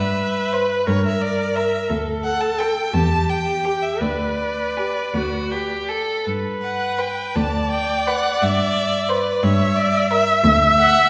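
A lyrical, serene slow movement for string quartet opens with violin, viola and cello sounding together, each played by a single bowed player with vibrato. The up-front violin carries the melody in a focused tone, while the viola, the most prominent voice in the blend, supplies rich accompaniment and the cello anchors the bass with a smooth top. A second violin joins at 0.5 seconds with a distant, even line beneath the melody and drops out at 10.4 seconds. The music moves in a flexible, rubato 6/8, and its harmony drifts from C over G through a darkening G minor sixth toward E minor and a settled G chord before circling back. A recital hall's reverb wraps the quartet in a lingering wet glow across this brief passage cut from a longer work.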